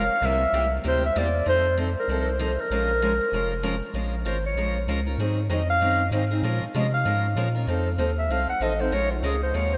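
Swinging and virtuosic, this short cut from a longer piece of acoustic string swing sets a mellow, subtoned clarinet with light vibrato and scooped notes, soloing from 3.9 seconds, over bright picked steel-string guitar and a deep, round analog bass, all bathed in the wet reverb of a vast, echoing cathedral space.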